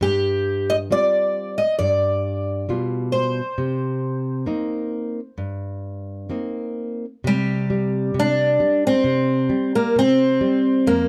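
A fingerpicked twelve-string acoustic guitar carries a mournful, longing melody over a dark, full-bodied nylon-string guitar in this fado-style ballad excerpt in C minor at a rubato 67 BPM, the twelve-string's shimmering, octave-doubled tone and audible finger squeaks sitting up front in a dry, close 1970s-style studio sound with light reverb as the harmony moves from G7sus4 through G7 and Cm7 to a bare C5 at 7.2 seconds.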